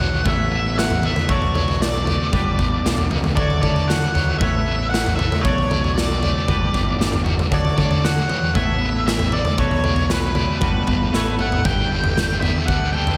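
Recorded with a light studio reverb, this upbeat, carefree indie rock excerpt puts a big, punchy acoustic drum kit up front, with a growling, overdriven fingered bass beneath a crunchy guitar riff treated with harmonic tremolo and a bright, twangy clean guitar set in the background with subtle chorus, slapback and tape echo. A dark, fuzzed octave lead guitar carries the melody through slapback echo over a cycling Aadd9, Bm7, Gmaj7 and Dmaj7 progression. During a drum fill that begins at 11.1 s, a smooth tonewheel organ enters very quietly at 11.6 s with key click and a slow rotary speaker as the harmony moves to Gadd9.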